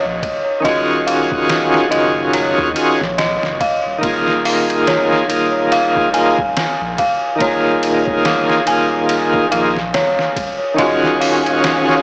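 Hypnotic and dark, this trip hop cut moves at 71 BPM in 4/4 with a swung sixteenth feel, built on a muffled, pitched-down sampler-style drum kit with a thumpy kick, a round sine sub bass sitting deep in the background, and eerie, inharmonic FM bell arpeggios smeared with chorus, 12-bit grit and tape echo. Up front, a shouting, lightly overdriven tonewheel organ with slow rotary speaker and tremolo carries the Ebm11 and Db6/Eb harmony. Bowed studio strings with vibrato arrive at 10.8 seconds and a faint flickering granular texture at 11.5 seconds, all through a blown-out, small-speaker sound with light digital ambience.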